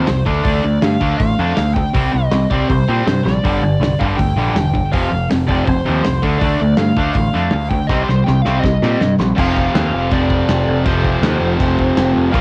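Raw and urgent, this punk rock excerpt from a home cassette recording sets a bright, biting lead guitar melody over an up-front distorted electric guitar riff, a crunchy overdriven guitar riff tucked in the background, a growling picked electric bass, and a loose, small-room indie drum kit with a punchy kick that fills at 3.3 and 7.9 seconds, before a very quiet double-tracked biting guitar riff joins at 9.4 seconds as the chords move to F.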